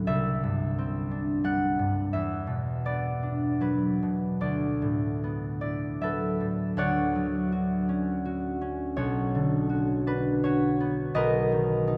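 A concert harp carries this serene, graceful classical piece alone, its acoustic tone warm and ringing as it sits up front and ranges from a deep B1 up to F#5. The music is in D major and moves in 3/4 at a gently flexible rubato between 72 and 90 BPM, played fingerpicked throughout. Rich, colored harmonies drift by, opening on Cadd9 and passing through Esus2 and D69 before a second section begins at 6.8 seconds on Dmaj7. That later part turns toward Bmadd9 and settles on Bmaj7 near 11.2 seconds. A very wet cathedral reverb with a long 6.1-second decay surrounds the harp, giving this 12-second fragment of a longer work a spacious, floating quality.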